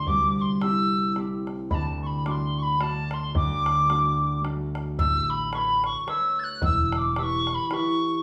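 Celtic folk in a lilting waltz time, this brief, lively and bright fragment is cut from a longer piece and sounds like a band playing together in one stone-walled room, with a moderately long, wet reverb hanging around them. A mellow metal tin whistle carries the melody up front, its pure, vibrato-tinged tone and soft attack giving an expressive voice that still feels slightly distant. Beneath it, a concert harp plays thumb-plucked accompaniment with a ringing, warm resonance, while a close, dry bodhran adds an open, boomy pulse with a gently swung feel. At 5.0 s the music moves into a new section with a shift in key, and an upright bass enters with woody, thumpy pizzicato on gut strings, lending a dark low end until 7.6 s. The chords travel from C to D and then to Aadd9 and Em, keeping the mood lively and bright through to the end.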